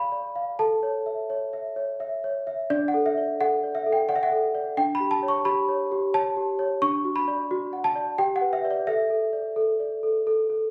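A straight triple metre carries this dreamy, tender classical lullaby, a brief passage cut from a longer piece in which a worn, slightly out-of-tune celesta plays alone from start to finish, its bell-like, dark tone sitting up front in a moderate recital-hall reverb that has the candid sound of a phone recording made in the room.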